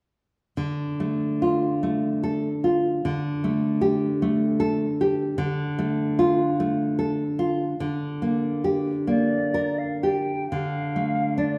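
Solemn and elegiac, this passage from a longer romantic duo in D minor moves in a slow, rubato 6/8 at 40-52 BPM, with a full-bodied, fingerpicked nylon-string guitar up front from 0.6 s, tracing Dm, Dsus4 and Gm/D, before a distant, pure-toned silver flute enters at 9.1 s with tongued, expressive vibrato, both parts bathed in a lingering recital-hall reverb.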